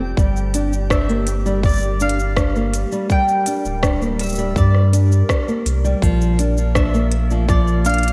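A deep, round sub bass sits up front in this delicate, autumnal folktronica passage, cut from a longer piece, anchoring a straight 4/4 groove. A small-sounding, thumb-plucked nylon-string guitar plays arpeggios through a delay, while a warbling, lo-fi pad with a slow attack holds sustained chords in the background, colored by chorus, phaser and its own reverb. From 0.2 seconds, a tight electronic kick and an electronic kit of crisp hi-hat, rim click and shaker, both re-recorded in a large room, give the music a produced pulse. A mellow, picked mandolin enters at 0.9 seconds with a high melody, its doubled strings carried by delay. The harmony rests on G minor before moving to B-flat at 6.0 seconds, and a lush hall reverb leaves the mix dreamy and soaked.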